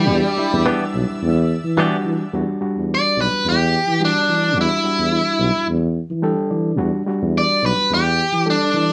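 Caught live in one room with moderate studio ambience, this brooding, soulful blues excerpt moves at 108 BPM in a straight 4/4 in E minor, opening on an Em7 chord. A biting overdriven guitar sits up front with the melody and solos over the opening 2.3 seconds, while distant, bright symphonic strings hold sustained chords and a twangy, compressed clean guitar with spring reverb adds brief stabs near the start. Underneath, a gritty reed electric piano played through a combo amp supplies the accompaniment and a fill at 6.0 seconds, and a mellow, punchy tuba with vibrato carries the bass.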